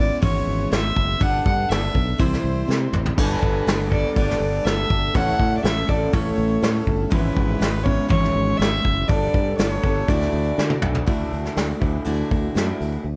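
Folk rock and heartland rock at 122 BPM in D major with a nostalgic, open-road mood, this short excerpt sets a distant, reedy fiddle melody over bright, full-bodied picked acoustic guitar, growly fingered electric bass and an up-front brush drum kit with fills at 2.7 and 10.6 seconds, while a dark, slightly broken-up electric guitar riff with warbly pitch drift enters in the background at 3.2 seconds, all in a dark, warm, lightly reverberant production moving through chords such as Gadd9, A and E6/G# before resolving toward Dadd9.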